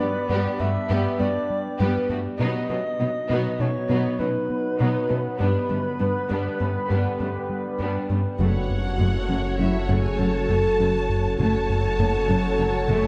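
Brooding and tense, this cinematic hybrid orchestral and electronic score excerpt moves at 100 BPM in 5/4 in F# minor, where a reedy FM lead with chorus and delay carries the melody until 8.1 s over a rich, distant violin section, background violas, a warbling analog drone, a very quiet tine-like synth pluck playing arpeggios, a round analog bass riff and a focused cello section, before at 8.4 s the harmony settles on F#m as a portamento violin melody, mellow punchy French horns, a menacing detuned saw bass with a filter swell and a woody double bass section enter in a moderate scoring stage reverb.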